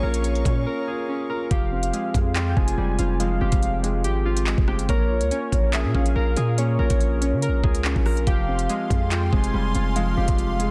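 Dense, heavily limited and nearly dry, this dark, tense drill excerpt at 142 BPM in a half-time feel in F minor puts a knocking, crisp-hatted drum kit with 12-bit sampler grit and a heavy, distorted 808-style bass up front, beneath warbling, detuned lo-fi synth keys playing arpeggios, a mellow concert grand piano through a low-pass filter, and a velvety synth lead with chorus, delay and vibrato as a second line, while distant, bowed chamber strings float in for the opening 1.5 seconds and return at 8.3 seconds.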